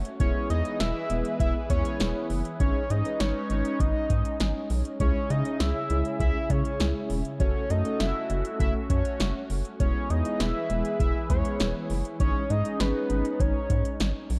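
An overdriven electro drum machine sits up front in this cool, melancholic synth-pop fragment, with a deep kick, punchy snare and metallic hats driving a straight 4/4 groove. Beneath it, a rubbery square-wave bass with a bouncy filter pluck and saturated, shadowy tone holds the low end from the very start. A fat, detuned sawtooth lead carries the melody in a narrow upper range, its sub octave and wave-folded edge kept mellow, with vibrato and a tape echo. Mellow synth brass, round and chorused, fills the middle and drops out at 13.6 seconds, while a swirling, airy analog pad with a noise layer and phaser drifts quietly behind in sustained chords. The harmony moves through E, G#sus4, C#m and F#m before returning to E and G#sus4, all set in light reverb with a dark, warm production and a faint mains hum, the excerpt cut from a longer piece.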